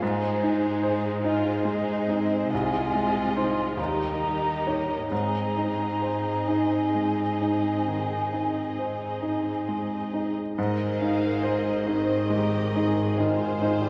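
A clear, intimate baby grand piano carries the lyrical melody of this lush romantic movement for piano and orchestra in Ab major, a slow, rubato 12/8 at 43-50 BPM, joined from the start by a hollow, pure concert flute line that stops at 10.1 s, a focused violin section in the background, distant, even violas, and close-sounding cellos with vibrato on the bass, until at 10.6 s a second violin section takes up a melody over a very quiet double bass section and a soft-attacked bassoon enters at 11.8 s, the music set in a wet concert hall heard from further back in the room, cut from a longer piece.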